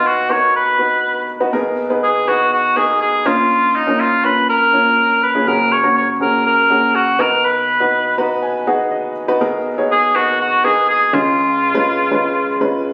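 Anthemic and hopeful, this pop passage, cut from a longer piece, sets a cor anglais melody with light vibrato and a vintage, classical-style tone, bathed in plate reverb, over an intimate, woody upright piano whose action noise is audible. Both instruments sit up front for the full 12.9 seconds, and the piano adds a fill between 7.9 and 9.4 seconds as the chords move from B through G#madd9/B, A#m and F#add9 before landing on C#. Captured on a phone in the room, the sound carries a moderate studio reverb.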